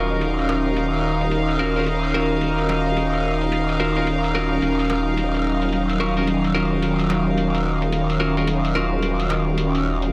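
Glitch hop at 109 BPM in Eb minor, this short cut from a longer piece has a funky, playful mood with a 16th-note swing, resting on a single Ebm9 chord throughout its 10.1 seconds. A warbling, detuned tape-like pad holds sustained chords with a nostalgic, lo-fi character, its chorus and built-in reverb adding to the vintage haze. Up front, a growling bass sits on a low Eb1, aggressive and wobbling with saturation, a formant filter and a bright, chorused edge. A clean, scooped electric guitar plays picked stabs through tape echo, while a dark studio string section bowed sul tasto adds a floating, smooth-topped texture. A gritty, pitched-down boom bap sampler-style kit enters at 0.2 seconds in the background, its hi-hat dulled by low-pass filtering alongside a rim click, and a cathedral reverb with a 6.3-second tail soaks the mix in a dreamy wash.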